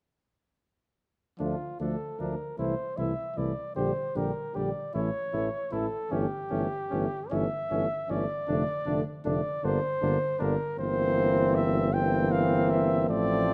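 A mellow cornet leads this solemn, grave brass quintet passage, carrying the melody up front with light vibrato and a close-miked presence. Cut from a longer classical piece in D minor, it moves at a slow 52 BPM in 6/8 with a rubato feel, and all five parts enter together at 1.4 s and play through to 13.5 s. Beneath the cornet, a flugelhorn with a warm, punchy tone shapes a second line. A French horn with a soft attack and a vintage colour, and a trombone with light vibrato, sit in the background as accompaniment. A tuba with a smooth top anchors the bass up front, guiding the harmony from D minor through A major and G minor before settling toward C7 over G. Close, detailed microphones capture the ensemble within a moderate recital hall reverb, giving the grave chords a sense of space.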